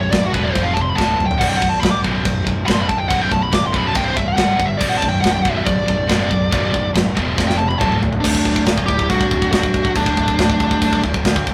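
A straight 4/4 pulse at 140 BPM drives this dark, epic heavy metal passage, cut from a longer piece and captured in a rough rehearsal room with light reverb, as a tight, up-front drum kit with bright cymbals, a medium-tuned snare and a tight kick works across china, crash and toms, adding fills at 1.0 and 7.4 seconds. A dark, high-gain lead guitar sits in front with a distorted solo melody, backed by a bright high-gain rhythm guitar riff in the background until 8.2 seconds, a very quiet sludgy guitar riff, and a round, fuzzy fingered bass, over chords moving from B5 through F5, D5, C5 and G5 to B minor. At 8.2 seconds the music shifts to a D chord as a second high-gain guitar line joins in the background beneath the lead.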